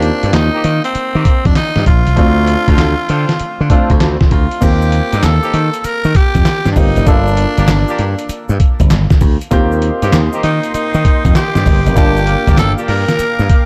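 A bouncy, punchy new jack swing groove at 98 BPM in 4/4, swung on the sixteenths, rides a gritty, tape-warm sampler-style drum kit with a thumpy kick, fat snare, handclaps, hi-hat and crash, anchored by a bright, up-front slap bass. Over the chords Eb6, Dm7 and Gm7, a raspy, edgy tenor saxophone carries the melody in a pop style with light vibrato, while a polished baby grand piano supplies clear accompaniment and a vintage jazz-style horn section adds delayed stabs in the background. A grainy egg shaker enters at 4.6 seconds and a lush, detuned, chorused unison pad brings sustained chords from 9.5 seconds in this dark, dry R&B excerpt cut from a longer piece.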